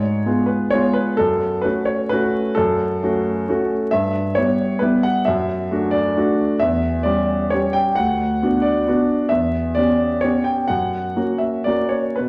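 Vinyl crackle and a large studio's lush 1.4-second reverb surround a smooth, vintage-toned concert grand piano, placed up front with a deep bass reaching down to D2 and rising to G5, as it plays this nostalgic, elegant classical waltz alone in 3/4, its rubato tempo moving between 114 and 140 BPM through a 12.3-second passage from a longer piece that settles on an F# chord at 10.7 seconds.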